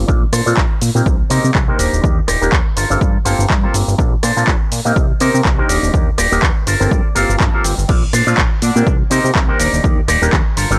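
A swung 16th-note groove at 123 BPM in 4/4 drives this sunny, feel-good filtered disco house excerpt, with an overdriven, punchy electronic kick up front and an analog drum machine supplying hi-hat, handclaps, cabasa, rim click and crash, all pumping against the kick. A fat sawtooth-and-square analog bass and a hollow, nasal auto-wah clav carry the Bbmaj9, Cm7, Ebmaj7 and Gm11 changes under a filter sweep that runs the whole 10.8 seconds, while a twangy, scooped envelope-filtered electric guitar riff enters at 0.3 seconds, and a clean guitar fill appears from 6.4 to 7.9 seconds. A brilliant, gritty horn section with octave doubling and analog delay sits in the background from 8.3 to 8.9 seconds, all within a dry, saturated hardware sound and digital ambience.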